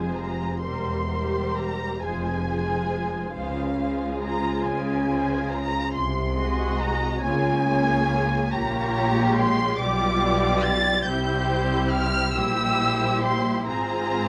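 A slow, melancholic and solemn romantic movement for muted string orchestra in F minor, cut from a longer piece, opens at once with all five sections sounding together in a rubato 6/8 at about 43-48 BPM: up-front con sordino violins carry the veiled, smooth-topped melody high over a second violin line, while lush violas, cellos and distant double basses lay a dark, vibrato-shaded bed beneath, all bathed in light reverb as the harmony moves from Fm through Dbmaj7 and G7/B to a C chord before settling on Fm/Ab near 13.7 seconds.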